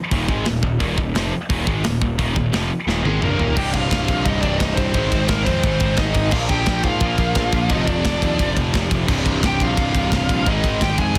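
Epic and dark, this heavy metal excerpt in C minor drives at 174 BPM, with two brilliant-toned rhythm guitars (one overdriven, one high-gain) churning riffs in the background over a growly fuzz bass and an up-front, tight drum kit with a rolled-off top, until a fill at 2.9 seconds brings in a dark, bluesy lead guitar with delay and a very quiet high-gain second line at 3.1 seconds, joined at 3.6 seconds by a double-tracked, biting overdriven riff guitar, all in a dense, heavily limited modern master.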